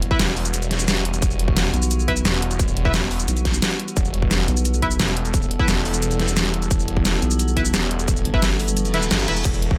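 A snarling, detuned saw bass growls up front through distortion and tube saturation, pumping against a punchy, overdriven kick, while a nasal vowel-sweep wobble bass enters at 1.7 seconds and returns later in this dark, futuristic slice of technical drum and bass. An overdriven dubstep kit with a deep snare, hi-hat, shaker and crash sits close alongside bright, band-passed chord stabs trailed by delay, over an eerie, metallic FM drone holding a sustained Emadd9 chord. Near the end the kick drops out at 8.8 seconds as an electronic reverse cymbal plays in the background, and the dry room keeps the mix tight.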